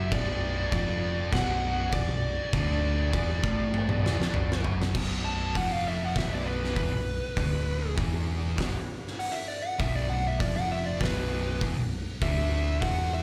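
An oversized, low-tuned drum kit sits up front in this sludgy, heavy stoner and doom metal excerpt, its fat snare, punchy kick, toms, hi-hat and crash cymbal sounding saturated and gritty in a bright stone room with a pumping character. The piece moves at a straight 99 BPM in 4/4 in B minor, opening on a B minor chord. Two thick fuzz guitars grind out the riff in the background, one darker and the other warmer in tone, while an overdriven picked electric bass adds a growly, amped punch underneath. A fuzz lead guitar plays from the start, and after a drum fill from 3.7 to 4.9 seconds it breaks into a solo that runs from 4.9 seconds to the end, its warm, distorted melody carried by slapback echo and delay. The whole performance comes across like a live club gig heard through the venue's PA, wrapped in small room ambience and club reverb.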